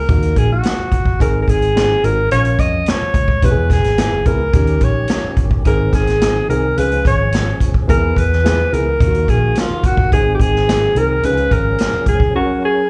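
Joyful and warm, this uptempo 1960s-style soul fragment moves at 108 BPM in a straight 4/4, cut from a longer piece. A breathy alto saxophone carries the melody up front from the start, its subtone and scooped notes lending a vintage jazz flavor, treated with slapback echo and plate reverb. Underneath, a foam-muted fingered electric bass sounds round and punchy, while a swinging big-band drum kit with a punchy kick and medium-tuned snare drives the groove on hi-hat, kick and snare. A dark upright piano adds mellow, woody, somewhat boxy accompaniment, also treated with slapback echo and plate reverb. At 4.5 seconds a lightly overdriven tonewheel organ slips into the background with fat sustained chords, percussive third-harmonic attack, key click and chorus vibrato through a stopped rotary speaker. The whole performance is heard as a live gig through the venue's PA, with club reverb and a dulled top end, over a progression that begins on D#m and ends on F#.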